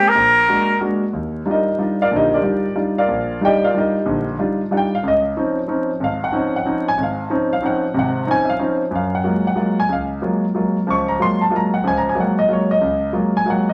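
Awash in large studio reverb and vinyl crackle, this brief excerpt of hypnotic, open jazz in a swung 3/4 opens with a nasal, breathy trumpet in a straight mute, close and whispered, alongside a warm concert grand piano with deep bass and audible action noise; the trumpet plays only until 0.8 s, after which the piano carries the chords alone through to 13.7 s.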